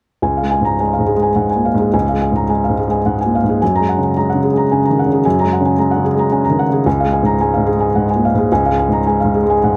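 Darkly produced with light reverb, this peaceful, intimate excerpt of neoclassical minimalist piano sets a felt-muted upright piano up front, its boxy, mellow tone and audible action noise carrying a rubato solo in 3/4 at 108 BPM in Db major (tuned to A4 = 439 Hz) from 0.2 to 9.8 seconds, ranging from Db2 to Bb5 over a Db to Gbadd9 and back to Db progression.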